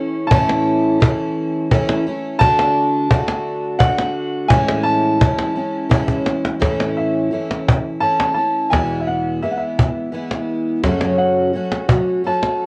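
Acoustic folk in a peaceful, unhurried 3/4 at 85 BPM, set in A major and tuned slightly flat of standard pitch, this short piece is cut from a longer work. An upright piano carries the melody high in its range, its tone woody and open. Beneath it, a fingerpicked twelve-string acoustic guitar sits up front with a full-bodied, shimmering sound, its octave-doubled strings filling out the accompaniment from low bass notes into the midrange. A cajon, present and close with faint snares and a vintage, band-limited character, enters at 0.3 seconds and plays a fill from 6.1 seconds that leads into the second section at 6.6 seconds. The harmony moves from A through D and Amaj7, then on to A, E and F#m. Light reverb and the worn, warbling pitch drift of old cassette tape color the recording, keeping its mood warm and peaceful.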